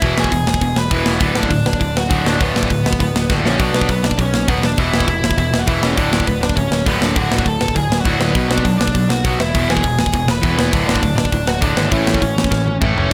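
Energetic and upbeat, this punk rock excerpt charges along at 202 BPM in straight 4/4 in D lydian. A bright, double-tracked distorted electric guitar riff sits up front with a tight metal drum kit whose polished, airy sound pairs a medium-tuned snare and tight kick across hi-hat and toms, while a growly, punchy overdriven picked bass holds the low end. Above them a dark lead guitar through a small cranked amp carries the melody over chords moving through E, D, Bm and A, with drum fills at 3.3 seconds and from 12.5 to 13.1 seconds in a dry mix.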